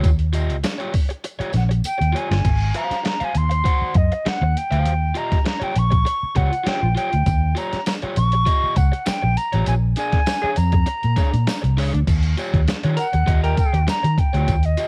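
A home cassette recording bathed in studio reverb carries a strutting funk groove at 100 BPM in Eb mixolydian, built on compressed, pitched-down boom bap sampler-style drums with a thumpy kick, a dark, round muted fingered electric bass up front, bright overdriven electric guitar accompaniment and a jingly tambourine in the background, while an airy, reedy concert flute takes the melody from 1.6 seconds and moves into a solo at 12.1 seconds, joined briefly at 10.4 seconds by a growling, breathy tenor saxophone.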